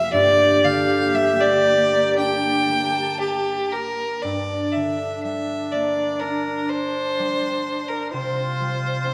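A rich, focused solo fiddle with light vibrato carries the melody up front over ringing, fingerpicked concert harp and a lush, bowed studio string section holding sustained chords in the background until 4.2 seconds, while a pure, wooden baroque flute with a soft attack adds an unsteady second line from 0.1 seconds in this longing, mournful Celtic slow air in G dorian, played rubato at about 57-67 BPM in 4/4, moving from Gm to Csus4 at 8.1 seconds within a moderate concert hall reverb, cut from a longer piece.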